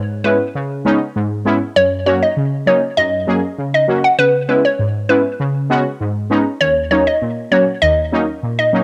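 The recording has a homespun cassette character, set in a light digital ambience. This short cut from a longer piece runs about 8.8 seconds. It's a bouncy, tough dancehall groove at 99 BPM in straight 4/4, sitting in C# dorian with the harmony moving through C#m7, F#, C#7 and D#m7. A synth brass stab carries the accompaniment from the first moment, placed up front between D#2 and G#4. Its detuned sawtooth tone is brassy and punchy, with a fast attack, a plucked filter, a decaying tail and chorus. At 0.2 seconds a hollow, bouncy square-wave pluck takes the melody between B4 and F#5, also up front and detuned, with a noise layer, a sub octave, a filter pluck, a fast attack, a decaying tail, chorus and its own cassette-tape colouring, and it sits slightly louder than the stabs.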